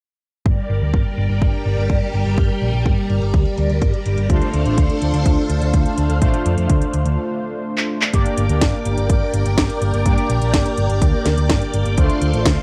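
A round, dark hollow-body electric bass sits up front in this nostalgic, danceable italo disco piece, cut from a longer track. Alongside it are a punchy electronic kick and a house kit of cracking snare, metallic low-passed hats and handclaps, both tape-warm and touched with studio reverb. A lush string machine holds soft-attack sustained chords through phaser and ensemble chorus, and from 4.3 s fat, detuned sawtooth synth brass adds bold stabs that warble with chorus and tape echo; a break with a drum fill at 7.8 s leads into a new section at 8.1 s, and the recording is dry and close in a 1970s studio style.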